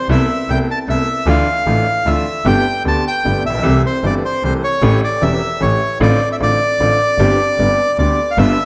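Tango in a dramatic, melancholic rubato 3/4, cut from a longer piece, where a reedy, up-front bandoneon carries the high melody with a slapback echo over a brilliant, woody upright piano whose audible action noise and long sustain feel intimate, while a single close, bowed double bass plays a biting, intense low line with vibrato and an airy bow, all set in a wet recital hall reverb as the harmony drifts from Amadd9/C to a Gsus4 that settles onto G near 7.6 seconds.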